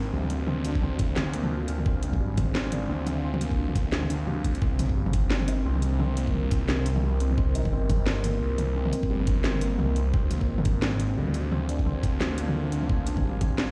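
A deep, moody pad with chorus, built-in reverb and sidechain pumping, a felt-muted upright piano playing soft, boxy arpeggios through dub echo, and a thick, swirling phased saw bass up front open this tense, cinematic half-time drum and bass excerpt at 174 BPM, moving from Ddim to Cm7 and back. The drum kit enters at 0.2 seconds with a cracking snare, bright hats and toms, and a knocking electronic kick joins at 0.8 seconds, both sounding layered and re-recorded in a small room with a swung, half-time feel. The whole mix sits in a bare stone room, as if played on a big sound system, with the piano's action noise adding an intimate, dark edge while the mellow pad stays in the background.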